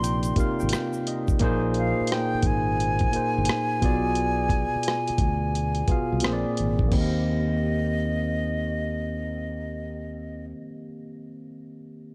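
R&B neo-soul at a relaxed, soulful 87 BPM in Eb major with a swung sixteenth feel, where an airy silver concert flute with vibrato carries the melody over a barky, lightly overdriven tine electric piano that opens with a fill, a punchy fretless bass with lush chorus, a gritty sampler-style drum kit with a thumpy kick that drops out at 7.1 seconds, and a close, dry tube shaker and finger snaps heard briefly in the background until 1.4 seconds, all in light reverb as the chords move from Cm11 to Eb69.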